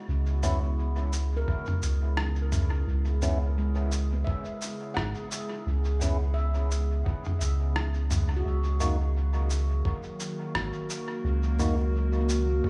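A light studio reverb gives this hazy, spacious ambient dub fragment, cut from a longer piece, a soft sense of room, with the round analog bass and a thumpy electronic kick sitting up front. At 86 BPM in 4/4, with a 58% swing on the sixteenths, it rests in C# dorian with tuning at A4 = 441 Hz, holding a C#m7 chord before shifting to D#m at 8.5 s. A warbling, nostalgic tape-like pad sustains chords through chorus, phaser and its own reverb, while a ringing, meditative handpan plays bright arpeggios with sharp finger strokes, trailed by dub echo. The deep, dark bass carries the low end, and a fat, clean tonewheel organ adds stabs through a slow rotary speaker and dub echo. A lo-fi, sampler-style kit of rim click, shaker and toms sounds muffled, pitched down and overdriven in a small room with dub echo, and the compressed kick joins at 1.5 s.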